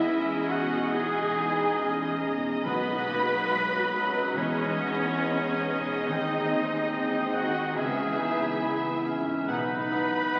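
This excerpt of a cinematic, emotional film score opens with the orchestra already sounding, moving at an unhurried, rubato pace in an uplifting yet tender mood. A smooth, close violin section carries the melody, while a clear, distant oboe, a mellow clarinet in the background and a lush, focused second violin section weave supporting lines around it. Underneath, a felt-muted upright piano with soft, intimate tone and audible action noise joins a rich viola section in accompaniment, a very quiet French horn section holds sustained chords, and a bright concert harp rings out arpeggios. The dark, woody cello section and a clear double bass section anchor the low end, and timpani struck with medium mallets enter very quietly between 2.6 and 3.9 seconds and again from 9.5 seconds. The harmony drifts from Emaj7 through B, G#/D# and C#m7 before settling back on B. The whole piece is bathed in a wet church reverb and heard through the crackle of a very old 78 rpm record, lending it a nostalgic, faded patina.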